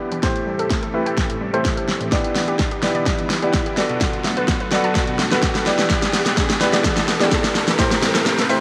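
Dance-pop build-up, energetic and driving, where a punchy, up-front electronic drum kit with fat snare, kick, hi-hat and shaker plays a fill throughout while a natural grand piano, a vintage sawtooth string machine of cellos and a hollow, bouncy square-wave pluck arpeggio pump under sidechain and a filter sweep, a very quiet riser sits beneath, and a moderate plate reverb surrounds it over Am7, Em7 and Bm7 chords.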